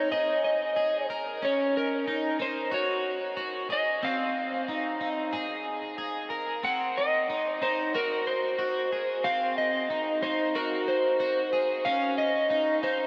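Ethereal and melancholic, this 13.1-second dream pop excerpt at 92 BPM in 4/4 features a warm, slightly broken-up electric slide guitar carrying the melody with lush chorus and diffuse ambient delay, over a bright, twangy, picked electric guitar at the edge of break-up playing arpeggios with subtle chorus and the same delay, both up front in a dreamy mix soaked in a huge ambient reverb as the chords move from Ab5 through Ebm7, Fm7 and Cdim to Eb7(no3).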